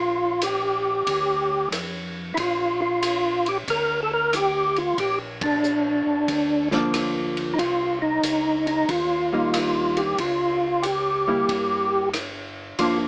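This bluesy, soulful soul jazz organ trio excerpt opens with a fat, lightly overdriven tonewheel organ carrying the melody up front, its percussive third-harmonic attack and key click turning through a slow rotary speaker with chorus vibrato. Beneath it, a second tonewheel organ plays the bass line in a round, mellow, clean tone, also with chorus vibrato and slow rotary. A vintage acoustic drum kit joins at 0.4 seconds with a punchy kick, medium-tuned snare, rim click, hi-hat and dark ride cymbal, sounding in a small, pumping room with a rolled-off top. The band hits an accent together at 5.3 seconds, and at 6.7 seconds a hollow-body electric jazz guitar enters up front with a picked, compressed accompaniment. The groove swings in four over Gm7, Cm7 and C#dim7, and the whole mix sits in light reverb with a small-speaker character.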